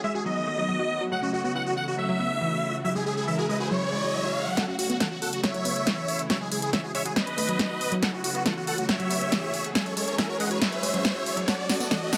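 A straight 4/4 pulse at 139 BPM drives this soaring, driving uplifting trance passage in F# dorian, cut from a longer piece, where a huge, detuned supersaw lead with vibrato carries the melody up front over sidechain-pumped arpeggios from a lush, punchy unison pluck with delay and dark, con sordino studio strings holding sustained chords around F#m, C#m and B. An electronic riser enters at 2.4 seconds, and at 4.6 seconds the drums arrive for a build-up and fill: an overdriven analog drum machine's snare, hi-hat and tambourine sit up front while a high-passed, overdriven electronic kick stays in the background. The lead's dub echo and a light reverb and low-pass filter on the whole mix add a hazy sheen around the dense, compressed lead.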